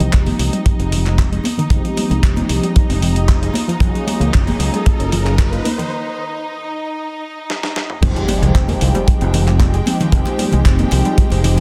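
Nu-disco with a groovy, cosmic mood, this excerpt builds as a filter sweep moves over the analog pluck's detuned, nasal arpeggios, set over brassy sawtooth synth brass with chorus and phaser, sustained chords from a bright studio string section with light vibrato, and a growly, tube-saturated fingered electric bass. A tight, up-front kick drum anchors a gritty, tape-warm sampler-style drum kit with handclaps, rim clicks and toms, while hard-hand congas sit in the background. A distant riser and impact enters at 2.5 seconds, the music breaks at 5.9 seconds, and after a drum fill it drops at 8.0 seconds, with the synth brass, strings and pluck pumping against the dense, heavily limited master.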